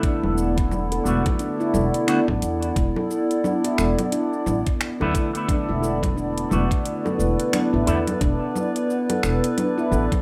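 Warm and peaceful, this short organic downtempo excerpt rests on a single E7sus4 chord with a gentle swing, as a warbling, detuned tape-like pad with chorus and sidechain pumping holds nostalgic sustained chords while a ringing handpan, struck with the fingertips and roughened by 12-bit sampler grit and tape echo, plays meditative arpeggios. A bright, twangy electric guitar with an envelope filter and a filter sweep adds clean picked accompaniment until 8.0 seconds, and a woody, gut-strung upright bass, played pizzicato, sits up front. Underneath, a gritty, thumpy electronic kick and a deep house kit of congas, finger snaps, shaker and metallic hats fill out a rough home-demo mix with a wet studio reverb.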